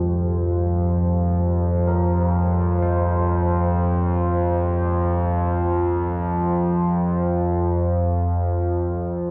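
Dark and cavernous, this short excerpt of a dark ambient drone in F minor drifts in free time, anchored by an up-front analog drone whose nasal, evolving sawtooth and pulse-wave tone is thickened with chorus and spans F2 to F3 for the full 9.3 seconds. Behind it, a deep, warbling, vintage-sounding ambient pad sustains an Fmadd9 chord with chorus and its own built-in reverb, fading out across the passage, while very quiet carillon bells with a bronze, mellow ring trace arpeggios until 8.5 seconds. The whole piece sits in a wet cathedral reverb with a long 5.1-second tail and the soft grain of cassette tape.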